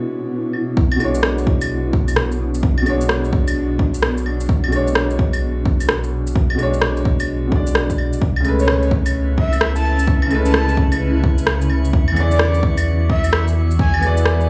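Bathed in light digital ambience, this wistful, rainy future garage excerpt pairs a mellow, woody upright piano with delay and a blurred granular cloud pad, both pumping under sidechain alongside a deep, round sine sub bass. A punchy, overdriven electronic kick and up-front, gritty electronic claves, shaker and rim click sit in a swung groove, while a faint glassy harmonics texture drifts in the background, and a breathy flute-like synth lead with lush chorus and tape echo enters at 8.6 s.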